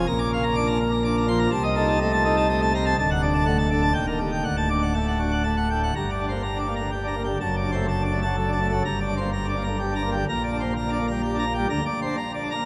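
A classical organ toccata in G minor, moving at 125 BPM in a straight 3/4, with a brilliant, jubilant mood in this short cut from a longer piece. A solo pipe organ on full plenum with mixtures and a baroque voicing sits up front, spanning D1 to D6 in a long cathedral reverb that lets each chord ring. The opening passes through Bb, diminished and D harmonies before a new section begins at 6.0 seconds, settling on G minor and ending on Bb/D.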